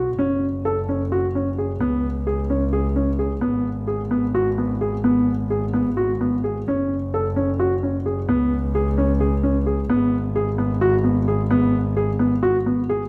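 Contemporary chamber music in 7/8, this short cut from a longer piece feels pensive yet urgent, its uneven metre keeping the motion restless. A baby grand piano plays arpeggios in its middle register, its dark, mellow tone boxy and intimate, with audible action noise and short sustain placed up front. Beneath it, a single double bass plays the bass line with the bow sul tasto, its soft attack and smooth top giving a pure, floating quality that sits just as close. The harmony cycles twice through the same short progression, settling each time on G# minor. A recital hall reverb with a long, wet tail surrounds both instruments, lending the sound a sense of space.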